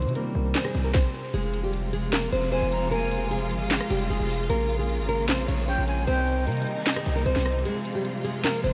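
A heavy, distorted 808-style bass sits up front in this eerie, brooding half-time trap cut, driving alongside a hard-clipped kick, sharp snare, handclaps, rim clicks and metallic hi-hats while a dark, fingerpicked nylon-string guitar carries the melody through tape echo. A mellow, intimate grand piano with audible action noise accompanies only until 1.3 seconds, when a lush bowed string section takes over with sustained chords full of vibrato and portamento. A breathy, close-miked concert flute adds a second line in two brief echoed phrases, the whole dreamy mix is soaked in huge ambient reverb, and a short break arrives at 7.7 seconds.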